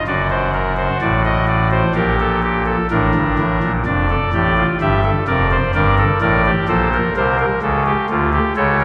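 A soft reed pipe organ opens this short fragment of a baroque-style three-part fugue, its oboe solo stop heard up front with baroque voicing and a distinct chiff as it spans a range from F1 to E5. The mood is contemplative yet driving, moving at 64 BPM in a straight 4/4, tuned to A4 = 442 Hz, with harmony passing from D7/F# through Gm/Bb, Dm/F and Bbmaj13/G to A7/C#. A long, wet church reverb surrounds the organ for the full 8.8 seconds.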